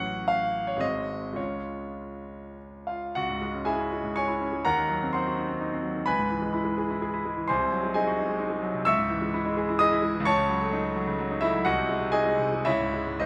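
A clear, up-front concert grand rings through a moderate recital hall reverb, its deep bass and long sustain giving the sound a smooth, vintage glow. This passionate yet hopeful romantic character piece for solo piano moves in 3/4 with a rubato feel, its tempo drifting between 98 and 135 BPM. It opens in D-flat major, then turns to C-sharp minor at 3.2 seconds for a longer passage that keeps circling back to its home chord, ending on C-sharp minor at 12.7 seconds as the fragment breaks off from a longer work.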